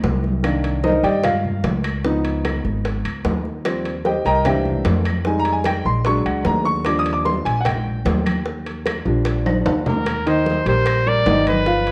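A lively, danceable Afro-Cuban jazz excerpt in Eb major at 150 BPM, where a warm baby grand piano takes a solo over chords like Cm9, Db9 and Ebmaj9 while a thumpy, gut-strung upright bass sits up front beside it. Ringing congas, tight high-tuned bongos and woody claves fill the background alongside ringing metal-shell timbales in a live room, with a drum fill at 9.5 seconds leading to a clear trumpet that enters at 9.9 seconds with light vibrato. The whole track has a worn, warbly cassette-tape quality and a moderate large-studio reverb.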